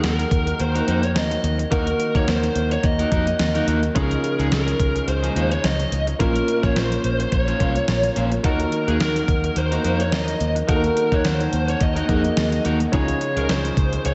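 A short cut from a longer 1980s-style pop piece opens with the full band at once: an overdriven lead guitar from a small cranked amp carries the melody over a clear grand piano, a twangy, slightly broken-up guitar riff, a foam-muted picked bass and a 12-bit digital drum machine. The mood is moody and urgent, moving at 107 BPM in 4/4 with a light swing on the sixteenths, in Eb dorian, with the harmony cycling through Ebm, Dbadd9 and Bbmadd9. The lead guitar is picked and colored by subtle chorus and diffuse ambient delay, a treatment the riff guitar shares while it stays tucked in the background. The piano is intimate and polished, with audible action noise and long sustain, while the bass comes through dark, round and punchy. The drum machine's thumpy kick, medium-tuned snare and hi-hat have a tape-warm, sampler-style character, as if re-recorded in a small room. A lush hall reverb soaks the dreamy mix, and the top end is rolled off above 8.0 kHz, leaving the 14.1 seconds soft-edged.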